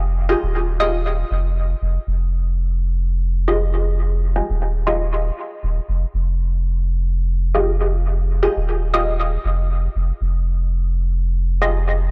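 Meditative and nocturnal, this dub techno passage in F minor moves at 118 BPM with a light swing on the 16ths, as a round, soft sub bass with transformer saturation sits up front from the start beneath a muted, detuned chord stab with a filter pluck, phaser and dub echo that enters at 0.3 seconds over an Fm9, all within a dry, gritty hardware recording and a digital ambience.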